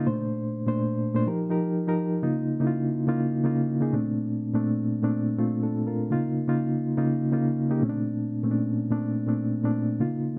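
A dark, echo-chamber reverb surrounds this short disco excerpt, where a reedy, mellow electric piano sits up front alone, its clean tone shimmering with fast tremolo through built-in speakers. At 124 BPM in a straight 4/4 feel and in Bb major, the keys move through lush chords such as Bbmaj9, F9sus4 and Db69, spanning Bb2 to C5. The mood is celebratory and joyful despite the soft, rounded sound.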